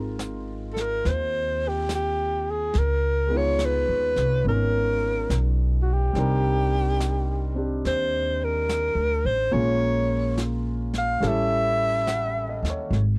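Dry and close, this recording has the intimate feel of a small 1970s studio, with little reverb around the players. It is a short cut from a longer jazz ballad in a relaxed swing, late-night and tender in mood. A breathy alto saxophone carries the melody up front from 0.7 seconds, its close-miked tone shaded with vibrato as it sings over the band. Beneath it, a baby grand piano with open, long-sustaining voicings supplies the accompaniment, moving through lush extended chords that end on an A7#11. The upright bass, plucked and woody on steel strings, sits forward in the mix, while a vintage brush kit sits low in the mix from a small room, its brushed snare and hi-hat rolled off at the top.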